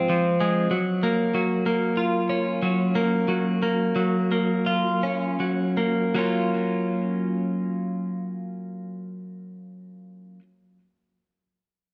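A bright, clean twelve-string electric guitar sits up front, picking compressed arpeggios through digital delay across the whole 10.4-second excerpt of this cinematic, soaring rock piece. Moving from Ab6 to Gbmaj7 in a straight 4/4, the playing slows from 0.7 to 6.2 seconds before shifting into a new section. A moderate recital-hall reverb gives the guitar an airy sense of space.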